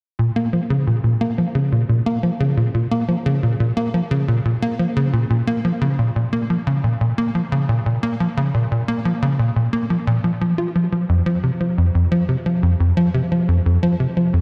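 Ambient and mysterious, this hypnotic fragment of a longer piece features a tight sequencer bass playing alone from 0.2 to 14.4 seconds, its punchy sawtooth-and-square tone shaped by a filter pluck and moving notch, touched with subtle chorus and analog delay, and sitting up front in a dreamy mix soaked in lush hall reverb.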